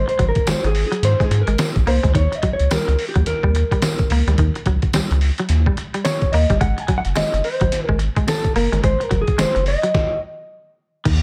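Playful and energetic, this short funk passage, cut from a longer piece, moves at 108 BPM in 4/4 with a 60% swing on the sixteenths. A gritty, pitched-down, sampler-style trip hop drum kit sits up front, with a thumpy kick, a medium-tuned snare, hi-hat and crash, all compressed and tape-warm as if re-recorded in a small room. A deep, round analog bass, dark and nasal with a fast attack and sustained notes, anchors the low end alongside it. A bright, twangy picked electric guitar solos on a riff throughout, while a dark, fingered, compressed electric guitar adds accompaniment until 10.2 seconds and a jingly, vintage, band-limited tambourine sits low in the mix. The harmony moves from Ab9 to Eb7 and back to Ab9, with a stop arriving at 9.9 seconds, and the whole is bathed in light reverb and digital ambience.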